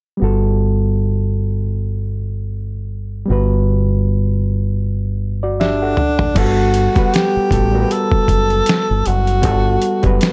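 A breathy tenor saxophone takes the solo spot at 5.6 s, its jazz-style line sung with vibrato and scooped notes, up front and touched with plate reverb. The piece is warm, relaxed neo-soul R&B with a lazy swing on the sixteenths, cut from a longer performance. From 0.2 s a reedy, overdriven electric piano, gritty through a combo amp and bathed in its own plate reverb, holds a Gmaj9 chord over a deep, round fingered electric bass heard direct and amped, low and close. The sampler-style boom bap kit arrives alongside the saxophone with a drum fill. Pitched down, compressed and overdriven, it offers a thumpy kick and medium-tuned snare along with crash, hi-hat and toms. After a brief break in the harmony, the Gmaj9 returns as the second section begins at 6.4 s, all within a dark production lightly washed in reverb.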